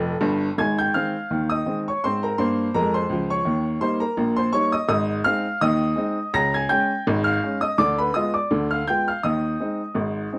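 A woody, boxy upright piano sits up front and plays solo through this lively, jaunty ragtime fragment, cut from a longer piece, in Ab major at 83 BPM in 2/4 with a light swing on the sixteenths. After a short piano fill in the first 0.6 seconds, the main section begins and moves from Ab through Eb7, Db and a Ddim7 before settling on Ab over Eb near 9.2 seconds. The piano spans a broad range from deep bass to bright treble, framed by a moderate studio reverb.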